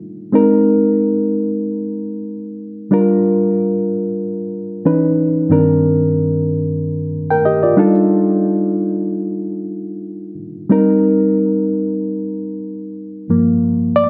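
This soul fragment, cut from a longer piece, sits at 92 BPM in 4/4 with a light 16th-note swing and a bittersweet, silky mood in C minor. A reed electric piano carries the whole 14.1 seconds alone, ranging from G2 up to G5 and sitting up front in the mix. Its tone is reedy and worn, slightly out of tune yet clean, heard through its built-in speakers with a slapback echo trailing each phrase. The harmony moves through rich extended chords, opening on Bb9sus4 and passing through Gm7, Dbm9 and F13 before settling on Cm7 and returning to Gm7 at 13.3 seconds. A moderate plate reverb and a dark, warm production surround the solo instrument.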